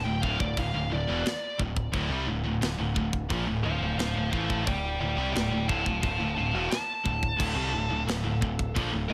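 Heavy metal in D minor at 88 BPM, this epic, heavy passage is cut from a longer piece and rides a straight 4/4 feel. A dark, distorted lead guitar sits up front with a solo melody between C5 and A5, colored by digital delay. Beneath it, two scooped high-gain guitars play a low riff in the background, joined by a very quiet, biting overdriven guitar that is double-tracked on a riff of its own. A growling, punchy picked bass with overdrive stands forward in the mix, while a tight acoustic drum kit with bright crash and china cymbals, a medium-tuned snare and a tight kick enters at 0.2 seconds. At 7.4 seconds, a soft, hollow pipe organ on stopped flute stops adds mellow sustained chords with a touch of chiff, and light reverb gives the whole passage a modest sense of space.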